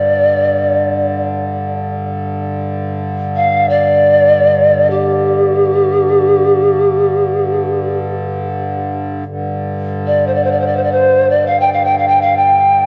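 Meditative and haunting, this short world excerpt features an airy, woody pan flute with gentle vibrato and soft attacks carrying the melody up front through a diffuse ambient delay, while a reedy, breathing pedal harmonium sustains a low drone beneath, all bathed in a wet recital hall reverb within a dark production.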